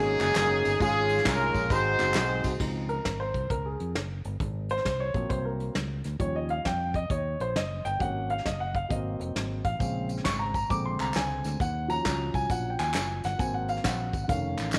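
A swung 134 BPM pulse in 4/4 drives this uptempo gospel excerpt in Db major, hopeful and reverent, with a soft brush kit of dark cymbals and a punchy kick alongside a fingered electric bass that sounds direct and amped. A tight horn section with light vibrato carries the melody for the opening 2.6 seconds, joined briefly by distant group handclaps, tube shaker and tambourine, before the grand piano, up front with long sustain, takes a solo over chords like Dbmaj7, Eb7 and Ebm7. The percussion returns at 9.8 seconds, and a moderate echo-chamber reverb lends the studio ambience a roomy glow.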